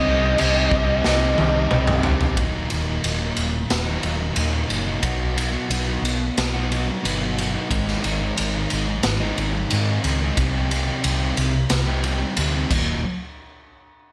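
Up front, a raw garage drum kit with a punchy kick and a gritty, saturated tone from a bright stone room drives this angsty, dark quiet-loud alternative rock excerpt at 90 BPM, its fill from 1.0 to 2.4 s closing a brief opening where a bluesy distorted lead guitar and a bright, double-tracked overdriven guitar with spring reverb sound before dropping out, while two thick fuzz guitars churn riffs in the background through chords moving from Cm to Ebm, B and Ab, and a round, hollow-body fingered bass anchors the low end.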